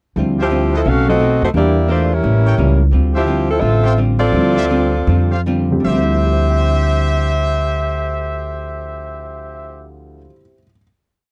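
Sultry and dramatic, this short big band swing piece in D minor moves at 149-174 BPM with a swung feel, a woody pizzicato upright bass playing in two up front while a warm grand piano comps in syncopated rootless voicings, its action noise audible, and a dark, clean hollow-body archtop guitar strums four to the bar in the background. The saxophone section carries the motif-based call phrases in smooth four-part block harmony with light vibrato, and the trumpet section punctuates with syncopated close-voiced stabs. After a slowdown from 2.9 to 5.9 seconds, the band settles onto a final chord that lasts until 9.1 seconds, all captured in a dry, close 1970s-style studio sound.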